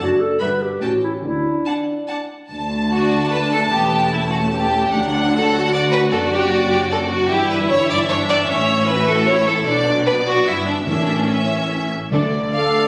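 A phone recording made in the room, set in a wet scoring-stage reverb with studio reverb and compression, captures a spirited, lively passage from a quick classical-period symphonic movement in 3/4 with a rubato feel. Rich, focused violin sections carry the melody and a second line over lush violas, a mellow French horn section holding sustained chords in the background, and distant cellos with smooth double basses on the bass, while an up-front clarinet adds a second line at the start and returns near the end. Round timpani on soft mallets enter at 10.9 seconds, and in the closing moments an oboe, a very quiet bassoon and a pure concert flute join as the harmony turns to D minor.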